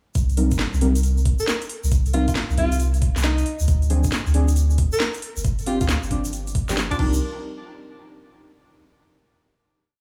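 A clear alto saxophone with vibrato carries this short, moody, late-night two-step garage piece, entering at 1.4 seconds with close-miked, jazz-style solo phrases touched by tape echo. Beneath it sits a soft, round dub sub bass that is up front in the mix, playing a skipping, syncopated line. Deep, dark chord stabs in drop-2 voicings add syncopated hits with chorus and tape echo, moving through Cm7, Dm7b5 and G7sus4 before returning to Cm7 in C minor. At 136 BPM with a 65% 16th-note swing, a knocking electronic kick drives the two-step rhythm, while a garage kit adds a cracking snare, metallic skipping hats and rims, and crash cymbal, and a grainy egg shaker plays hand-played sixteenths. Everything sits in a light small-room ambience, and the groove gives way at 7.2 seconds to a final hit.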